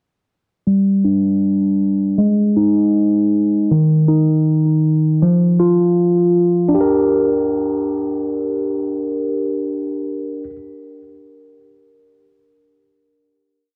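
A mellow tine electric piano plays alone from 0.7 s, repeating a patterned quarter-note arpeggio like a sampled loop in this melancholic, eerie half-time trap and hip hop piece. The clean, up-front keys run through phaser, analog delay and a low-pass filter that sweeps through the breakdown until 6.7 s, when the part settles on a final G minor chord. Light reverb sits on a dry, gritty recording.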